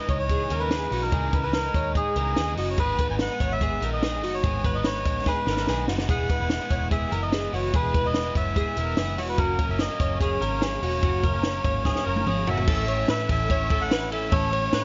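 Lightly reverberant and dark at the top end, this bright, nostalgic slice of jangly indie pop moves at 146 BPM in a straight 4/4, tuned slightly flat of standard pitch. An up-front, close-miked melodica carries the reedy, breathy, nasal tune over a warm, clean twelve-string electric guitar playing chorused arpeggios, a crunchy overdriven guitar picking out accompaniment, and a round, foam-muted vintage bass. A dry, compact cocktail drum kit with a punchy kick, high-tuned snare and dusky cymbals drives the groove, marking fills at 5.3 and 11.9 seconds before the harmony moves from its C#madd9, G#m, E and F# progression to A at 12.7 seconds.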